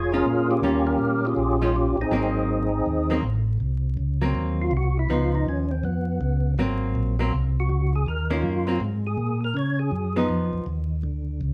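A swinging 4/4 groove at 161 BPM drives this soulful, bluesy jazz excerpt in Ab mixolydian, cut from a longer piece. Up front, a fat, lightly overdriven tonewheel organ carries the melody, its third-harmonic percussion, key click and chorus vibrato turning through a slow rotary speaker until it drops out at 10.3 seconds. A second tonewheel organ plays the bass line with a smooth, clean tone through a stationary speaker, also touched with chorus vibrato and key click, and it plays on to the close at 11.5 seconds. A picked, compressed hollow-body archtop guitar, miked through an amplifier, fills in chords beneath them, moving through changes such as Bbm7, Eb9, Cm7b5 and Db9. From 3.6 seconds the second tonewheel organ takes a solo. The band sounds as if it is playing live in one large studio room, with moderate reverb and a layer of vinyl crackle.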